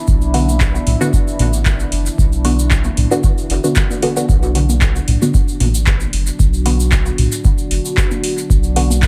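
Dub techno at 114 BPM in B minor with a light swing, deep and hazy, this short excerpt rests on a single Bm chord as a dark, detuned sawtooth pad with a sub octave holds sustained chords under chorus and its own reverb, pumping together with a soft, round sub bass. A deep, tape-warm kick leads the drums, joined by a booming analog drum machine with handclaps and metallic hi-hats soaked in dub echo, electronic toms in the background, and a grainy, bright tube shaker. From 0.3 s, muted, detuned chord stabs with a filter pluck drift through chorus, phaser and dub echo in a digital ambience.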